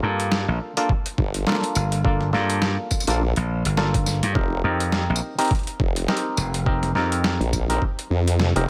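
Glitch hop with a playful, swaggering strut and a swung feel, this short cut from a longer piece moves from Gm9 to F9sus4 at 4.4 seconds. A bright, punchy slap bass opens alongside stringy clav stabs treated with auto-wah, sidechain pumping and tape echo. A gritty, pitched-down sampler-style kit of hi-hat, medium-tuned snare, tambourine and toms arrives at 0.2 seconds, followed by a thumpy, overdriven electronic kick at 0.9 seconds, and a sawtooth-and-sine formant-sweep wobble bass with chorus and tube saturation joins at 1.2 seconds, while the dry, up-front mix ends with the kick dropping out for a drum fill at 8.4 seconds.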